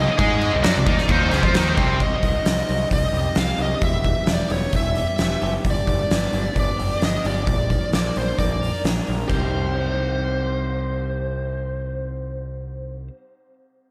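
A straight 4/4 pulse at 132 BPM drives this cathartic, brooding slice of quiet-loud alternative rock, cut from a longer piece and set in a big arena sound with a lush hall reverb. For the first 2.0 seconds, three stacked rhythm guitars pick out a riff: a high-gain distorted guitar in the background, a double-tracked high-gain part kept very quiet, and a very quiet overdriven guitar. At 2.0 seconds they give way to a twangy, slightly broken-up guitar through a small old amp, playing phaser-coloured arpeggios in the background as the chords move from Cm through Em, G and Bb before returning to Cm. Up front throughout, a bluesy lead guitar sings a distorted, warm melody, while a growling picked bass with bright, amped overdrive anchors the low end. An oversized, low-tuned acoustic kit with a boomy kick, fat snare and dark cymbals pumps in its big room, gritty and saturated, from 0.2 until it stops at 9.4 seconds.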